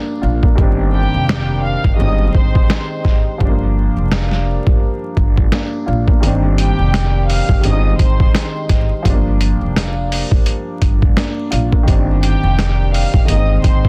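A swung sixteenth-note groove in four drives this dark, moody boom-bap hip-hop cut, taken from a longer piece. A sampler-style drum kit sits up front with a thumpy kick, medium-tuned snare and hi-hat, its pitched-down, compressed hits carrying 12-bit grit and a tape-warm tone; the kick drops out briefly from 6.2 to 6.9 seconds. Beneath it, a pizzicato upright bass on gut strings adds a woody low end, while a worn, slightly detuned upright piano supplies mellow chords with long sustain, audible action noise and a filtered cassette character. A clear, smooth studio violin section enters at 0.9 seconds to carry the melody with even, bowed vibrato, trailed by delay. The harmony cycles through minor-seventh, add-nine and slash chords, and the mix is dense and heavily limited, set in a small room with vinyl crackle.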